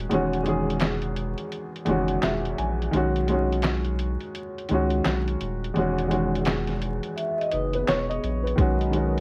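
A woody, slightly detuned upright piano with cassette-tape wear and plate reverb opens this nostalgic, mellow lo-fi hip hop fragment at 85 BPM with a 16th-note swing, over a deep, saturated sine sub bass and a muffled, pitched-down sampler drum kit with thumpy kick, snare, hi-hat and handclaps carrying 12-bit grit, while Emaj7 and Badd9 harmonies alternate under vinyl crackle and warbling tape drift, a metallic, ringing soft-mallet vibraphone with analog delay appears at 7.2 s, and a smooth, detuned sawtooth pad with chorus settles into the background at 8.6 s on a Bmaj9 chord.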